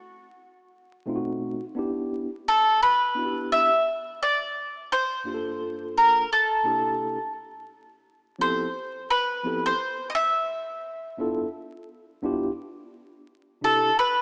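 A bowl-back mandolin carries the melody up front, its picked double strings giving a mellow, acoustic shimmer that runs from the opening through 14.2 seconds. This is a relaxed, warm hip hop excerpt at 86 BPM in 4/4, with a 60% swing on the sixteenths lending a loping, laid-back feel. A mellow tine electric piano enters at 1.1 seconds as accompaniment, sounding warm and clean through its built-in speakers and also sitting up front alongside the mandolin. The jazzy harmony moves from B7b9 through Em7, Gm7, C13, Fmaj9#11 and G13 before settling on C69. A lush hall reverb with a long tail surrounds the parts, while vinyl crackle and a small-speaker quality give the rough home-demo mix a dusty, intimate character.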